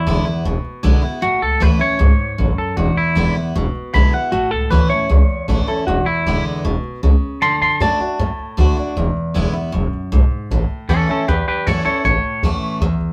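Rock with an upbeat, retro feel, this short cut from a longer piece sets a twangy, clean electric guitar melody over a full-bodied picked steel-string acoustic guitar with audible finger squeak and a woody, thumpy pizzicato upright bass on gut strings, all three up front as the band plays live in one room with moderate studio reverb, moving through E7, A and D chords before a new section arrives at 10.5 seconds.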